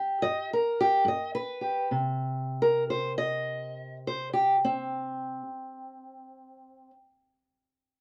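Gritty and swaggering, this short fragment of acoustic country blues, cut from a longer piece, moves at an unhurried 69 BPM in 4/4 with a loping swing on the eighth notes. A fingerpicked steel-string acoustic guitar carries the whole thing alone, sitting up front and ranging from G2 up to Eb5. Its tone is dark, woody and boxy, with the dull bite of old strings and the compact voice of a parlour-size instrument. The opening phrase slows down until 1.9 seconds, where a new section begins and runs to 5.4 seconds, and the guitar plays through to 6.9 seconds. The sound is dry and close, like a 1970s-style studio recording, with just a light touch of reverb around the guitar.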